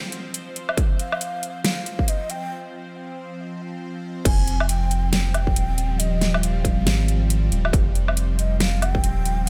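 A dry, up-front mix carries this meditative yet heavy half-time deep dubstep excerpt, where a bright, detuned, string-like drone with phaser and vibrato sustains chords beneath a breathy, hollow low ney melody trailing dub echo, while a dubstep kit of crash, metallic hi-hats, huge snare and woodblock is joined by a distorted electronic kick through the build-up and a break at 2.5 s before a round, soft sub bass enters on the drop at 4.3 s.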